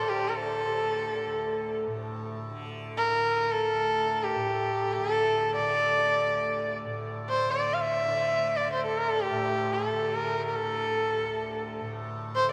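Drenched in a long cathedral reverb, this 12.5-second excerpt of Hindustani classical music floats in a vast, echoing space, unhurried and in free time, with an introspective, longing mood. A single bowed sarangi sits up front carrying the melody, its nasal, boxy tone gliding smoothly with light vibrato and portamento while its sympathetic strings ring. Beneath it, a softly plucked tanpura holds a low, buzzing drone that shimmers throughout.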